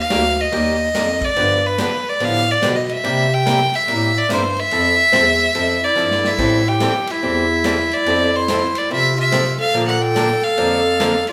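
Recorded as a band playing live together in one large studio, this short cut from a longer western swing piece carries a moderate room reverb that gives it a natural, lived-in glow. A clear, close fiddle leads the swinging, playful tune from the first moment, its bowing airy and earthy with a light vibrato, sitting up front in the mix. Underneath, a bright, boxy acoustic guitar picks out swing-style accompaniment, its finger squeaks audible, while a dark bass clarinet carries the low end with vibrato and scooped notes in a jazz manner. A big-band drum kit with a punchy kick and medium-tuned snare swings along in the background, working ride, hi-hat and crash, and it throws in a quick fill just after 6 seconds. At 5.8 seconds a raspy, gritty clarinet joins with a vintage, growling second line, adding mellow grit as the harmony moves through rich seventh and ninth chords.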